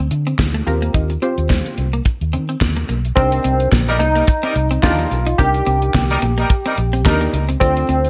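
A barky tine electric piano carries the melody from 3.2 s in this slick, late-night early-eighties boogie funk excerpt with a swung sixteenth feel, riding over a round, foam-muted fingered bass, a damped 70s drum kit with fat snare, tight kick, hi-hat and handclaps in gated reverb, a detuned sawtooth polysynth comp with filter pluck entering at 0.7 s, a dark, compressed clean electric guitar riff with subtle chorus, and a distant horn section with light vibrato adding a second line from 3.9 s.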